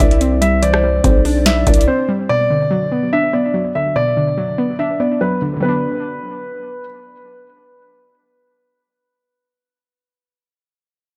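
Trap-flavored hip hop with a menacing, melancholic half-time feel: a dark, mellow baby grand piano carries the melody with analog delay. Beside it, a warbling, lo-fi pluck with chorus and delay plays accompaniment. Booming analog drums with a deep kick, crisp snare and metallic hats sit up front together with a growling, buzzy 808-style bass. Drums and bass drop out at 1.9 seconds, while a hollow, woody clarinet-like synth lead hovers in the background until 2.2 seconds, leaving piano and pluck ringing through an echo-heavy ambience.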